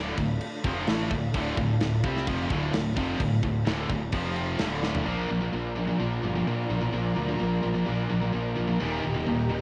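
A straight 4/4 pulse at 129 BPM drives this dark, relentless heavy metal excerpt, with a tight, up-front acoustic drum kit of kick, snare, toms and crash entering at 0.2 seconds, playing a fill at 4.8 seconds and dropping out at 5.1 seconds as the second section begins. Underneath, a growly, punchy fuzz bass played with fingers anchors the low end, while three picked electric guitars carry the riff: a bright, high-gain scooped part with distortion and a double-tracked overdriven stack guitar, both set back in the mix, along with a very quiet high-gain heavy guitar. Behind them, a distant bowed string ensemble holds sustained chords with vibrato, portamento and a soft attack. The harmony moves from Dm through F5 back to Dm, then shifts to Bb and finally Eb near the end. A small room reverb and the grainy character of a home cassette recording give the piece a compact, lo-fi feel, with tape coloring the strings, drums and two of the guitars.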